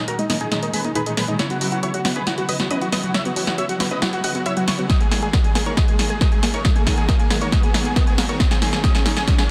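A driving 137 BPM pulse in straight 4/4 builds through this euphoric uplifting trance excerpt, with a punchy analog drum machine playing hi-hat and snare fills up front from the start, and an overdriven, layered electronic kick landing at 4.9 s as the chords move from G#sus2 through F#7sus4 to D#sus4. A huge, thick supersaw carries the melody under a filter sweep with sidechain pumping and digital delay, joined by a catchy plucky unison lead higher up with subtle chorus and tape grit, a bright wave-folded pluck arpeggio sweeping in the background, and a reedy, gut-toned chamber string section holding sustained chords. A very quiet riser creeps in at 2.5 s, and the whole build sits in light reverb and digital ambience under a dense, heavily limited modern master.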